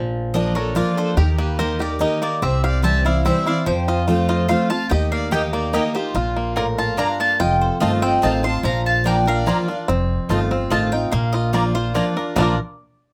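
Twangy banjo arpeggios picked with fingerpicks sit up front in this rustic, virtuosic bluegrass waltz at 145 BPM in Bb major, joined by a full-bodied jumbo acoustic guitar picking an accompaniment, a dark, woody pizzicato upright bass, and a bright double-strung mandolin melody, while a clear, lightly vibrato fiddle line hovers in the background until 9.8 seconds and a second mandolin adds picked stabs from 5.3 seconds, all captured with close, detailed microphones and light reverb in a short cut from a longer piece.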